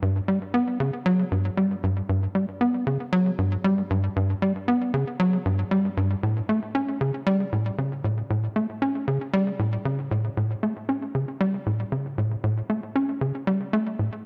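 A moderate plate reverb with a 2.9-second decay lends an airy space to this cosmic, expansive ambient excerpt in 4/4 with a straight feel. A tight sequencer bass plays solo from 0.0 to 14.1 s, its punchy sawtooth and square-wave tones shaped by a filter pluck and fast attack that decay into a mellow, up-front sound. Subtle chorus and delay color this driving line, which spans G2 to C#4.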